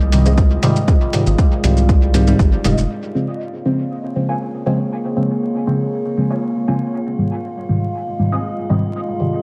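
This nocturnal dub techno excerpt opens on a deep, moody ambient pad of sustained chords with chorus, reverb and sidechain pumping, over a round analog bass that plays until 2.9 seconds. Muffled, pitched-down hi-hat and cabasa, a punchy overdriven kick up front, a soft, filter-swept chord stab treated with phaser and dub echo, and a muted, detuned dub stab riff carrying ensemble chorus all arrive within the first moments. The chords move from Fm7 to Bbm7 at 2.9 seconds, and from 3.5 seconds an eerie, warbling metallic drone sounds alongside them as they return to Fm7, all inside an echo-heavy mix with spring reverb, digital ambience and vinyl crackle.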